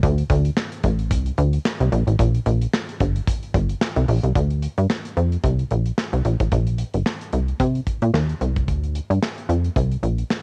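A swung sixteenth-note groove drives this danceable early-eighties boogie funk fragment. Up front sits a punchy, nasal analog synth bass with a sawtooth-and-square edge, ring modulation and a fast-attack filter pluck, beside a dark, smooth acoustic drum kit of tight kick, medium-tuned snare, hi-hat and handclaps with a rolled-off top and a cassette-tape tint, heard in a dry home cassette recording that moves into a new section at 4.4 seconds.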